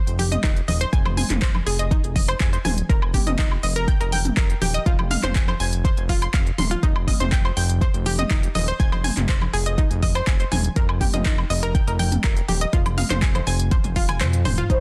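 A dense, heavily limited and dry mix carries this bittersweet, emotional progressive house passage, cut from a longer piece, with a deep electronic kick up front and a thick, saturated sawtooth bass that pumps against it. A deep house kit of handclaps, smooth hats, toms and woodblock sits alongside electronic congas and toms set back in a small room, while a round, bright analog pluck plays chorused arpeggios through tape echo over a Fm-centred cycle of chords that hover above an F bass. A drum fill starts at 13.7 seconds, the kick drops out at 14.2, and a velvety, vibrato-tinged synth lead with 12-bit grit enters at 14.7 seconds on a single note just as the passage ends.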